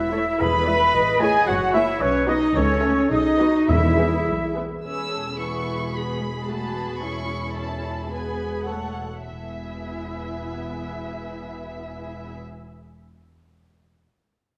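Mellow French horns hold sustained chords in the background of this quick, restless classical-period movement for symphony orchestra, set in E major in 2/4 at roughly 99 to 114 BPM with a rubato feel. Around them, the trumpet section adds tight stabs, while an airy flute, a clear oboe and a warm clarinet trace second lines, and the timpani strikes E2 with medium mallets in two brief spots. Beneath this, veiled con sordino strings play throughout: one violin section carries the melody with vibrato and soft attacks, a second violin section and the violas fill in lines and accompaniment, and distant cellos join the double basses on the bass. The winds, brass and timpani fall silent at 4.6 seconds, leaving the muted strings alone to continue the dramatic mood, with the tempo slowing from 6.5 to 9.3 seconds before the harmony settles back on E. A scoring-stage reverb with a 1.7-second tail gives the ensemble a spacious, cohesive sound, and this cut from a longer piece ends at 12.3 seconds.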